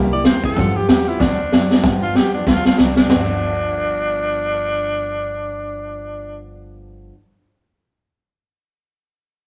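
A raspy, punchy tenor saxophone with light vibrato leads this rollicking, upbeat rockabilly excerpt in G mixolydian at a swung 190 BPM, over a woody, growly pizzicato upright bass, a full-bodied picked dreadnought acoustic guitar and a gritty, saturated garage drum kit with a high-tuned snare and boomy kick that plays fills from 1.2 s before dropping out at 3.2 s, all set in a moderate stone-room reverb with a rough rehearsal-room sound.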